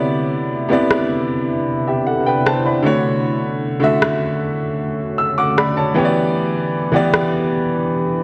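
Tender and smooth, this 8.2-second contemporary R&B break in D major at 77 BPM sets a clear, boxy, up-front baby grand piano over a deep, moody pad with chorus and its own reverb through Cmaj9, Dmaj7 and Em7, while a barely audible electronic downlifter sounds until 3.2 s and a tape-warm electronic rim click plays from 0.9 to 7.3 s, all in an echo chamber reverb with the warbling pitch drift of worn cassette tape.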